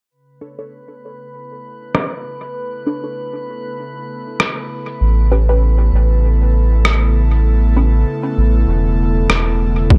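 Spacious and meditative, this ambient dub excerpt moves at 98 BPM in 4/4 with a light swing on the sixteenths, resting on a Bm9 chord before shifting to Aadd9 at 5.0 seconds. An airy, breathy pad with a soft noise layer and chorus fades in from the start to hold sustained chords. Above it drifts a glassy texture of calm overtones, sitting bright and quiet with its own reverb. A muted, detuned chord stab plucks through phaser, cassette tape coloring and dub echo while a filter sweep moves across it, and a muffled, compressed electronic rim click sits up front with its own filter sweep and echo. At 5.0 seconds a round, deep analog bass with tube saturation enters low and forward, and a thumpy electronic kick drum lands only at 9.9 seconds, all within a dry, close mix.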